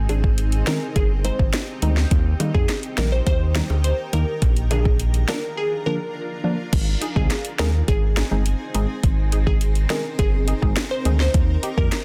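Dancehall at 104 BPM in a straight 4/4, this short cut from a longer piece feels summery and bouncy, moving through Ab, Eb and Bb chords. An electronic afro-pop drum kit sits up front with a deep kick, sharp snare, metallic hi-hats and crash cymbal, joined by a round, dark analog bass that blends sawtooth, sine and triangle tones into a sustained, evolving low end. A glassy, crystalline wavetable pluck carries the melody in a narrow upper range, colored by chorus and tape echo, while a crisp, detuned wavetable chord stab with a short decay fills out the accompaniment. Beneath them, a cloudy granular pad holds blurred, bright sustained chords with a slow attack and built-in reverb, pumping against the sidechain. Tight, high-tuned acoustic bongos played with soft hands appear in the background from 2.1 to 4.8 seconds, a brief break arrives at 5.6 seconds, and the whole mix sits in a digital ambience with a dense, heavily limited master.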